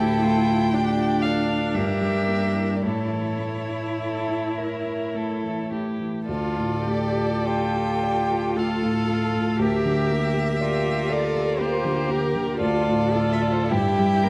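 Elegiac and solemn, this excerpt from a slow romantic movement for piano quintet unfolds in D minor and 3/4 time at 48-62 BPM, its rubato pacing lending each phrase a grave, unhurried weight. A dark, mellow baby grand piano sits up front with long sustain, carrying the accompaniment from the low bass to the middle register throughout all 14.3 seconds. Above it, one violin sings the melody with a warm tone and vibrato, smooth, even and close, while a second violin and a cello, both rich and smooth, shape supporting lines, the cello set slightly in the background. A single viola fills out the accompaniment with a focused, vibrant bowed tone. The harmony moves from D minor through a diminished chord to A major, returns to D minor, touches G minor over a D bass, and closes on an E minor chord over G, all bathed in a generous concert hall reverb that gives the dark production its spacious glow.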